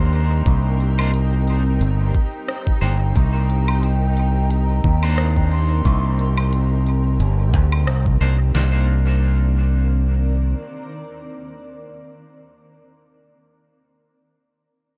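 A growling, overdriven fingered electric bass sits up front in this spacious, meditative ambient dub excerpt, carrying the low end under a loose, lightly swung groove. A lo-fi sampler-style kit joins at 0.5 seconds with a thumpy, muffled kick and fat, pitched-down snare, while an organic electronic kit adds crisp hi-hat, rim click and woodblock that trail off into dub echo. A clean, bright electric guitar plays picked stabs through tremolo and dub echo, and a blurred, detuned granular pad holds Cm9 chords beneath, bathed in its own reverb. Far in the background, a hollow wooden flute sings a pure, vibrato-tinged melody that ends at 6.8 seconds, alongside a bubbling, resonant stepped-filter texture on a single note. The mix is otherwise dry and dark at the top, and after the rhythm parts drop away the guitar rings on with the pad, outlasting it to 12.7 seconds.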